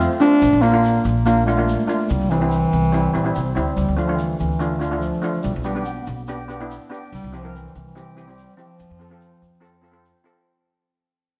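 A shimmering, band-limited steel pan, played with hard rubber sticks, opens this bouncy, carefree calypso fragment alongside a woody pizzicato upright bass and a grainy, compressed tube shaker, with the pan and bass sitting up front. From 0.2 seconds a dark, punchy bass clarinet carries the solo melody in a classical style, close-miked and touched with analog delay. The band moves through Bb, C, Dm, G/B and C7 before settling on F, all within a moderate concert-hall reverb, and the whole passage is fading out.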